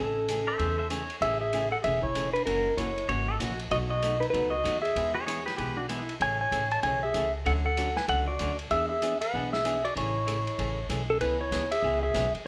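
A swung, bouncing four-beat groove drives this playful, down-home western swing excerpt, carried by a thumpy, woody upright bass plucked on gut strings and a muffled vintage drum kit with a punchy kick and rolled-off top that enters at 0.3 s. Up front, a clean, dark lap steel guitar sings the slide melody with volume swells, while a growling clarinet adds a raspy, breathy second line with vibrato and scooped notes, and a pedal steel guitar, played with fingerpicks, joins with its own swelling second line from 0.5 s to 6.1 s. A picked, hollow-body archtop guitar fills in the chords beneath, and the band sounds as though it is playing live together in one large studio with moderate reverb.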